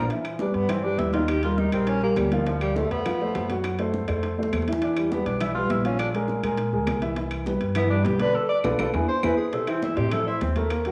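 A tenor saxophone carries a solo through this lively, danceable Afro-Cuban jazz excerpt, its warm subtone and vibrato heard up front in a roomy, somewhat distant sound. A concert grand piano shares the foreground with warm, open voicings and deep bass, moving through colourful changes such as Emmaj7, Dm7, F#dim and Bb7sus2 before landing on Am. An acoustic upright bass with steel strings plays pizzicato in a woody, warm tone beneath them. The percussion sits further back: bright, high-tuned congas with a damped, saturated edge, very quiet round bongos struck with hard hands, ringing metal-shell timbales and woody claves. Drum fills arrive at 4.2 and 8.4 seconds, the second coinciding with a band accent. The whole has the intimacy of a cassette home recording, bathed in a wet spring reverb, and the fragment is cut from a longer piece.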